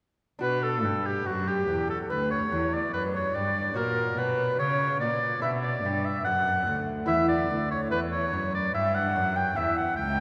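Solemn and introspective, this short excerpt from a baroque-style classical sonata movement in B minor moves at a stately 72 BPM in 4/4, tuned to A4 = 444 Hz and bathed in a deep cathedral reverb. A clear, present oboe carries the melody up front, joined by a pure, softly attacked concert flute with vibrato in the background as a second line. Beneath them, a delicate fingerpicked lute with doubled gut strings supplies the accompaniment, while a single bowed cello, up front yet distant-sounding, anchors the bass with expressive vibrato and portamento through a progression that settles on E minor at 7.1 seconds.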